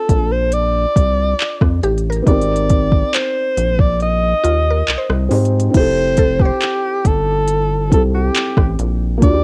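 This short cut from a longer piece has the dry, close feel of a home cassette recording, with little reverb and tape coloring on the saxophone, piano and synth pluck. It is a smooth, dreamy contemporary R&B groove in a straight four, with chords drifting from Bbmaj9 to Abmaj9 and then settling on Fmaj9 as a second section opens at 5.7 seconds. Up front, a warm alto saxophone carries the melody in a jazz-style solo voice, its vibrato and scooped notes sitting atop a smooth upper edge. Beneath it, a felt-muted upright piano gives soft, boxy, intimate accompaniment, while a woody, round mallet-like synth pluck adds bright FM texture with chorus and analog delay until it drops out at 7.4 seconds. A rubbery, hollow square bass with a resonant filter pluck bounces along up front, alongside an electronic R&B kit of crisp hats, handclaps, rim clicks and crash, overdriven and up front, whose soft kick falls silent from 4.0 seconds until the section change.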